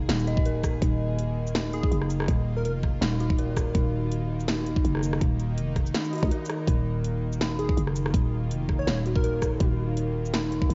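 A tense, string-like drone, an eerie detuned synth bell playing arpeggios through chorus, phaser and analog delay, and a growling, buzzy 808-style bass open this dark, cinematic excerpt of half-time drum and bass at 164 BPM in Eb minor. A kit of cracking snare, metallic hats, rim click and shaker joins at 0.1 seconds, followed by a knocking, up-front electronic kick at 0.4 seconds. A punchy, catchy plucky unison lead with tape echo surfaces at 1.7 seconds, and a faint electronic swell appears at 6.1 seconds. Most parts carry the dulled, tape-worn character of a home cassette recording.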